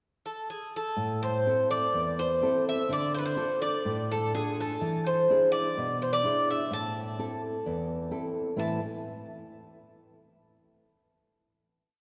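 A straight 4/4 pulse at 126 BPM carries this short, moody Greek folk piece in A harmonic minor, where a metallic, double-strung bouzouki enters at 0.3 seconds with an ornamented modal melody picked up front, some octave-doubled strings ringing over a pickup bar. From 1.0 seconds a dark, fingerpicked nylon-string guitar joins with classical oompah bass notes and chord figures, finger squeak audible, moving through Am, Dm and E7 before both parts stop at 8.8 seconds. A wet church reverb with a long tail gives the cool little tune a spacious hall-like glow through its final chord.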